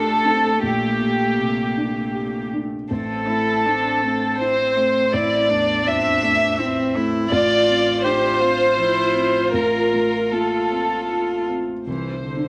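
Longing and fragile, this neoclassical piece for piano and strings moves in a lilting three-beat metre with a rubato feel, cut from a longer work. A chamber violin section carries the melody up front, its sul tasto tone soft in attack and touched with light vibrato, with a slapback echo on the line. Beneath it a single cello sings a second line with an airy bow, while a lone viola sits in the background as hushed accompaniment until it drops away at 11.6 seconds. A dark baby grand piano reaches into the low register with a mellow, boxy sound, long sustain and audible action noise that adds to the close, intimate feel. Light reverb surrounds the ensemble as the harmony drifts from Gmadd9/Bb through Am and F/A before settling on Cadd9 at 11.9 seconds.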